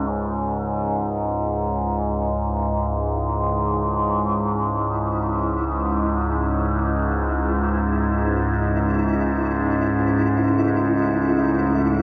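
In free time, this dark, desolate ambient drone in C# minor, cut from a longer piece, rests on an up-front low drone whose nasal, resonant tone has moving overtones, with chorus and its own reverb. In the background, a deep, moody analog pad fades in with detuned, wave-folded chords, lush with chorus, moving from C#madd9 to A at 8.4 seconds. A grainy, flickering granular texture fades in from 1.2 seconds, and the whole sits in a cavernous cathedral reverb.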